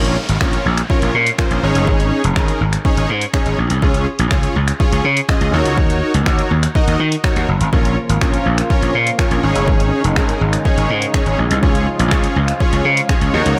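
A very quiet downlifter sits beneath a punchy analog drum machine of kick, hi-hat and finger snaps, a growly, overdriven slap bass and a fat, detuned sawtooth polysynth with chorus, tape echo and sidechain pumping, opening this carefree, euphoric dance-pop excerpt before a lush, nasal unison pad enters in the background at 7.7 s, all within an echo-heavy mix touched with light reverb.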